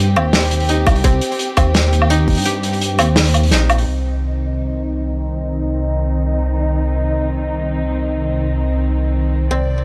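A half-time 170 BPM groove in C minor drives this dark, spacious drum and bass cut, where a gritty, saturated breakbeat kit of hi-hat, snare and woodblock and a tight electronic kick that enters at 0.9 seconds and drops out at 2.5 seconds sit up front over a deep, rumbling detuned saw bass. Meanwhile, a bowed chamber string section holds sustained chords with 12-bit sampler grit, sidechain pumping and a low-pass filter that sweeps once the breakbeat stops at 3.9 seconds, and a dry, woody koto plays delayed arpeggios until 5.9 seconds before returning briefly near the end.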